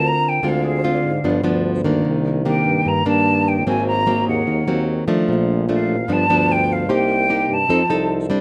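In a straight 4/4 bossa nova groove, this romantic, breezy fragment of a longer piece sets an airy flute melody with vibrato and a soft attack over dark, full-bodied fingerpicked nylon-string guitar with audible finger squeak, a roomy jazz-style tuba bass with light vibrato and scooped notes, and a short-sustained baby grand piano in the background, all moving through chords such as Dm7b5, G7, Cm9 and Ab9 in a rough, small-room home demo mix.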